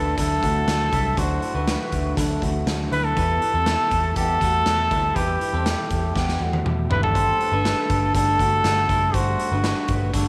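A warm, vintage-toned trumpet sits up front carrying the melody, its punchy, vibrato-laced solo lines trailed by tape echo in a pop style. This bright, nostalgic slice of jangly indie pop, cut from a longer piece, moves at 120 BPM in a straight 4/4 over chords of Dadd9, Em and Gsus2. Two electric guitars run through a small old amp, both compressed and slightly broken-up: one picked chordal accompaniment and one fingered arpeggio part, set in the background and bathed in lush chorus and tape echo. A dark, round, foam-muted bass anchors the low end. The raw garage drum kit enters at 0.2 seconds with a punchy kick, medium-tuned snare, hi-hat and toms, sounding saturated and gritty in a bright stone room that pumps, and it plays a fill between 6.2 and 7.2 seconds. A moderate spring reverb gives the whole recording a vintage sheen.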